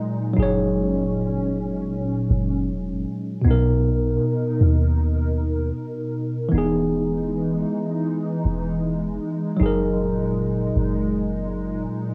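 A slow 78 BPM groove in 4/4 with a swung sixteenth-note lilt carries this dreamy, smooth contemporary R&B fragment in F# mixolydian, moving from F#69 through Bmaj7 and Emaj7 before settling back on F#69 at 9.6 seconds. A worn, slightly out-of-tune tine electric piano, lightly overdriven and tape-colored, plays the accompaniment up front beside a hollow, flute-like pad whose detuned, slow-attack chords shimmer with ensemble chorus and cassette grit. A deep, round 808-style bass with a fast attack and decaying tail enters at 0.4 seconds, all set in a modest booth ambience with the hazy intimacy of a home cassette recording.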